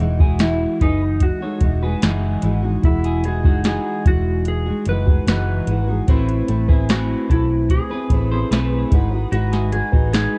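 A soft vintage rhythm box sits up front in this hazy, nostalgic bedroom pop excerpt, its deep kick, crisp snare and metallic hats setting a straight 74 BPM pulse in 4/4. Beside it, a muted fingered electric bass gives a round, dark, amped low end in E major. A picked steel-string jumbo acoustic guitar carries the accompaniment with a full-bodied tone, audible finger squeak, lush chorus and a warbly pitch drift. A fingered slide lap steel guitar with a clean sound takes the melody from 0.4 seconds, treated with subtle chorus. Beneath it, a quieter, warm electric guitar adds a second line through subtle chorus and analog delay. The chords move from Emaj9 to Amadd9 at 6.1 seconds and G#m7 at 8.9 seconds, all set in light reverb and digital ambience with the worn warble of old cassette tape.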